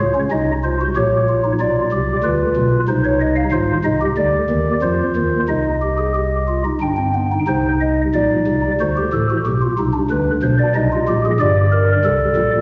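Bathed in a lush, reverberant scoring-stage sound, this solemn, serious cut from a longer baroque-style three-part fugue in triple metre features a solo chamber organ on a stopped flute stop, its soft, hollow, mellow voice with a gentle chiff sitting up front across a range from deep bass to high treble as minor-key harmonies unfold over about 12.6 seconds.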